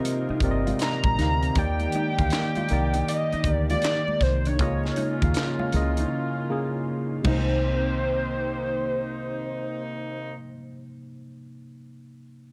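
A swung sixteenth-note feel in 4/4 drives this late-night, introspective neo-soul and R&B clip, cut from a longer piece. A tight funk drum kit with punchy kick, high-tuned snare, hi-hat, handclaps and crash sits alongside softly struck, thick-skinned congas, while a deep, round, foam-muted fingered bass anchors the low end. Up front, a worn, slightly out-of-tune tine electric piano, lightly overdriven through a combo amp, carries the accompaniment, and a hollow, woody square-wave lead with vibrato and chorus sings the melody. Further back, a smooth, warbling analog pad holds sustained chords, a distant jazz-style horn section adds stabs, and a dark, clean electric guitar with harmonic tremolo plays a second line. The harmony moves from Cm7 through Ebmaj7 and Db69 back to Cm7; a silent gap falls at 6.1 seconds, and after the other parts drop away the electric piano plays alone from 10.3 to 12.5 seconds. 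Light studio reverb and a cassette tape character colour the sound.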